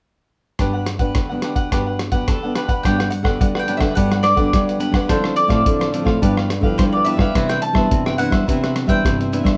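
Lively and sunny, this cut from a longer samba and choro piece opens at 0.6 seconds with a crisp, bright cavaquinho and a full-bodied, fingerpicked nylon-string guitar over a lo-fi sampler-style drum kit whose thumpy kick, hi-hat and rim click sit up front, muffled, compressed, pitched down and re-recorded in a large room. A round, picked mandolin with double strings takes the melody from 2.3 seconds, and a second deep classical nylon-string guitar adds a fingerpicked bass line from 2.9 seconds. Finger squeak from the first guitar's fresh strings comes through, while a moderate studio ambience places the ensemble further back in the room.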